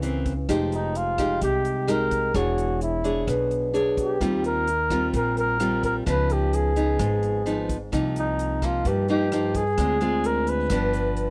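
A dry, close 1970s-style studio sound frames this intimate, melancholic bossa nova, cut from a longer piece. Fingerpicked nylon-string guitar, full-bodied with a touch of finger squeak, sits up front beside a woody, growly pizzicato upright bass and a swinging big-band drum kit with an airy hi-hat, punchy kick and rim click. At 0.7 seconds a breathy flugelhorn enters with a mellow, whispered melody, played with light vibrato and a soft attack over chords moving from Fm9 through Eb69 and Cm7 to G7.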